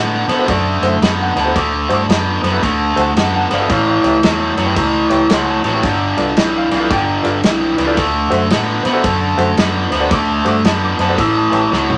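Electric blues shuffle in D major at 112 BPM, with a rollicking, soulful mood and a swung eighth-note feel in 4/4, cut from a longer piece. An overdriven, picked electric guitar carries the riff up front in its low register from the very start, alongside a dark, round, foam-muted fingered bass that sits lower in the mix. At 0.3 seconds a bright, woody upright piano with short sustain adds polished accompaniment high above, while an acoustic drum kit with a punchy kick, medium-tuned snare, ride cymbal and toms plays from the same moment in a small-room sound. The harmony moves through D7, A7 and G7 before returning to D7 and turning to A7, and a drum fill arrives at 11.7 seconds. A moderate studio reverb gives the ensemble a natural sense of space.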